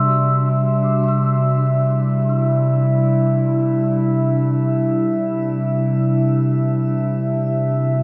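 A warbling, detuned tape-like pad sits up front with dark, nostalgic chords, wrapped in chorus and shimmer reverb, in this weightless ambient passage cut from a longer piece. A large celesta with soft felt hammers fades in from 0.5 s with delicate, bell-like arpeggios high above, while a glassy, ethereal glass harmonica holds a beating texture. A very quiet, string-like drone with a tense edge enters at 5.6 s, all of it bathed in a huge, wet reverb and a lo-fi cassette sheen.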